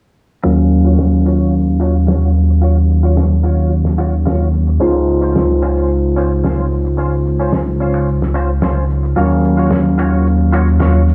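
A barky, overdriven tine electric piano sits up front in this short nu-disco clip, its gritty tone pushed through a combo amp and roughened further by vintage 12-bit sampler grit, a low-pass filter, tape echo and a filter sweep as it carries the accompaniment. Beneath it, a fat, detuned sawtooth analog bass holds a thick, sustained low end with a fast attack and its own filter sweep. A clean electric guitar, recorded direct and picked with a compressed, twangy, scooped sound, plays a riff softened by ensemble chorus, tape echo and a swept low-pass filter. Cabasa, a fat snare and finger snaps give the straight 4/4 groove an airy, polished, acoustic texture. All four parts enter together at 0.4 seconds and move from Ebm9 to Dbmaj7 at 4.8 seconds and back to Ebm9 before the clip ends at 11.1 seconds. The overall sound is dry and gritty, colored by transformer saturation and cassette tape, with light small-room reverb lending a sensual, groovy mood.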